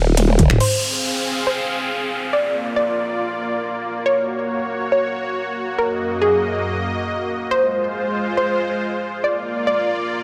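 Heavy wobble dubstep in F phrygian at 139 BPM with a half-time feel, this aggressive excerpt opens on a brief blast of saturated, formant-filtered wobble bass with chorus and overdrive, while a tape-toned dubstep kit with metallic hats, crash, ride, snaps and toms drops a drum fill at 0.2 seconds, joined at 0.4 seconds by a knocking electronic kick. From 0.6 seconds the low end falls away, leaving a detuned unison pluck with delay carrying the melody over a bright, lush supersaw pad that pumps from sidechaining, wears vintage 12-bit sampler grit and sits behind a low-pass filter, moving through Fm, Bb, Gb and Ebm/Gb. An electronic downlifter sweeps beneath until 4.1 seconds, all set in a lush hall reverb.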